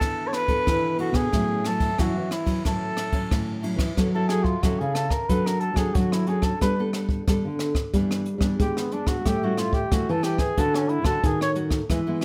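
Sunny and joyful, this short cut from a longer samba and choro piece moves at 91 BPM in a straight 4/4, centred on A major. A dark trumpet carries the melody with light vibrato and a jazz-style phrasing, sitting up front yet sounding distant and roomy through plate reverb, and it takes a solo from 4.0 seconds until it stops at 11.5 seconds. Beneath it, a bright, fingerpicked nylon-string guitar supplies the accompaniment with a touch of finger squeak, while a second nylon-string guitar, thumb-plucked with old strings and a woody, full-bodied tone, holds down the bass line. A jazz brush drum kit with dark cymbals and a boomy kick plays up front on hi-hat, ride, kick and rim click, capturing a small-room feel. The harmony drifts from E7sus4 and A6 into a sequence through F#m7, Gadd9 and A7 before landing on Dmaj7, all set in a moderate studio reverb.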